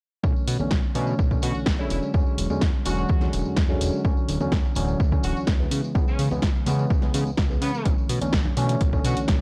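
Funky and nostalgic, this short filtered disco house excerpt grooves at 126 BPM in straight 4/4 in B dorian, moving through Bm11, E13, Dmaj9 and C#m7 as an overdriven, barky reed electric piano with phaser and a fat, detuned sawtooth bass with tube saturation pump under low-pass filtering. An up-front, overdriven electronic kick anchors the beat from 0.2 seconds, joined at 0.5 seconds by a punchy analog drum machine snare and hi-hats, while ringing tambourine and congas with hard hands sit in the background. From 1.4 seconds a tight jazz-style horn section with light vibrato carries the melody through 12-bit sampler grit and tape echo, all captured dry on a gritty cassette-tape hardware recording.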